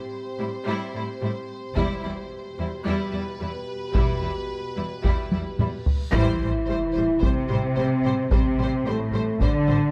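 Epic and dramatic, this cinematic orchestral cue opens with a dark French horn section holding sustained chords beneath a smooth violin melody. At 0.4 seconds a clear, intense second violin line, a rich viola accompaniment in the background and a lush cello bass join in. At 1.8 seconds an expressive double bass section with portamento and heavy-stick taiko drums, close and dry up front, join in, and a drum fill leads to a huge, bright reverse cymbal and sub drop at 5.9 seconds. At 6.1 seconds the band strikes an accent and an impact lands as the music moves into a new section, heard through light reverb and detailed close microphones.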